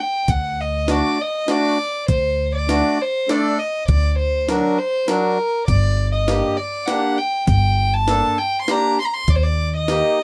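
Lightly reverberant, this soulful, festive klezmer cut in 3/4 opens with a single bowed violin at 0.0 s, rich and floating with a soft attack and sul tasto tone, soon joined by woody pizzicato upright bass and a gritty, compressed, pitched-up breakbeat sampler-style kit with a thumpy kick, high-tuned snare and hi-hat. A reedy, close-miked accordion with slow beating enters at 0.9 s to fill out the accompaniment. The harmony moves from D to Gm at 5.7 s and on to Eb near the close of this short passage from a longer piece.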